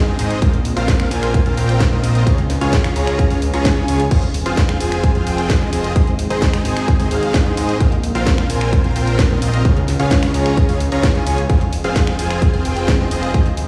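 Festival progressive house at 130 BPM in F minor, this euphoric, emotional excerpt cycles through Bbsus2, Db, Fm and Ab chords, held by a lush, warbling vintage pad with chorus and a slow attack that sits very quiet in the mix. A huge, detuned supersaw riff with vibrato and tape echo rides on top, pumping with sidechain alongside a fat, wave-folded analog bass that carries a filter sweep. A punchy, up-front electronic kick enters at 0.4 s beside a house kit of cracking snare, finger snaps, hi-hat and crash cymbal, both re-recorded in a small room, and the track sounds played on a big sound system in a bare room with a large studio reverb.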